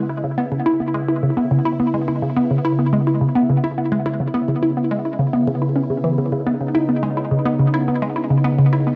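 Ambient, sequencer-driven space music in C# minor at 106 BPM, this hypnotic, mysterious fragment is cut from a longer piece and rests on a single C#m7 chord throughout its nine seconds. A swirling, detuned sawtooth pad holds sustained chords with a slow attack and a moving notch, colored by phaser, chorus and cassette tape. Up front beside it, a hollow, bouncy square-wave pluck repeats a riff with a fast attack and short decay, treated with chorus, phaser, tape and delay in a wet studio reverb on a home cassette recording.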